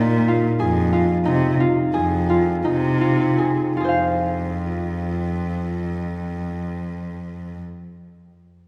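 Restless and pensive, this short cut from a longer contemporary chamber piece moves in an uneven 9/8 in F minor at 156-192 BPM counted in eighths, easing back in tempo over its first 3.8 seconds as the harmony shifts from Eb to F minor. Up front, a mellow, ringing concert harp plays fingerpicked arpeggios between Eb4 and F5, while a single cello carries the bass from F2 to C3, bowed sul tasto with an airy, intimate tone, soft attack and light vibrato. The duo sits in a wet concert hall reverb with a 2.2-second decay, heard from further back in the room.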